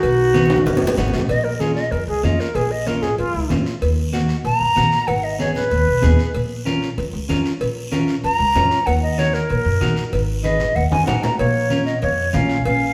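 Driving and danceable, this cumbia excerpt moves at a brisk 190 BPM in straight 4/4, cut from a longer piece and played live by a band in a stone room whose reverb wraps the sound. A hollow, airy concert flute sits up front with vibrato and a crisp attack, carrying the melody throughout and taking a solo from 1.3 s to 11.4 s over a minor progression that cycles through Bbm, Ebm and Abm. Beneath it, a woody, pizzicato upright bass is also up front, while a dark, clean electric guitar adds picked accompaniment. Ringing, low-tuned congas struck with hard hands, metal-shelled cowbell and timbales set in the background, and a raspy, close guiro fill out the percussion, with drum fills marking the turns into and out of the solo. A breathy, subtoned clarinet with a soft, vintage jazz character plays a quiet second line at the opening and returns at 11.4 s.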